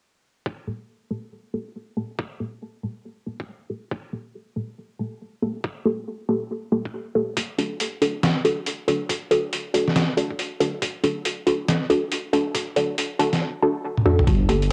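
Recorded at home on cassette with a moderate spring reverb, this brooding, meditative deep dubstep excerpt moves at 139 BPM in a swung half-time feel in G harmonic minor. A thumpy, pitched-down kick starts at 0.5 s beneath a muted, evolving dub chord stab that is phased, tape-coloured and dub-echoed under a long filter sweep, shifting from Gmadd9 to D. At 7.4 s a gritty sampler-style trip hop kit brings hi-hat, a medium-tuned snare and toms, and after a short drum fill a dark, rumbling detuned saw bass surfaces at 14.3 s.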